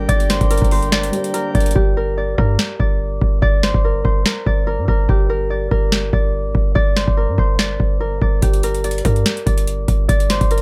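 A booming analog drum machine drives this melancholic, hard-hitting half-time trap excerpt, its deep kick, crisp snare and metallic hats overdriven and up front, with the hi-hats dropping out from 1.8 to 8.4 seconds. A punchy, heavy 808-style bass with a fast attack and decaying tail sits beneath a ringing, thumb-plucked concert harp melody that carries through the whole clip. For the opening 1.8 seconds, a dark, boxy grand piano with audible action noise murmurs in the background alongside full, romantically voiced pipe organ chords, all under a light reverb.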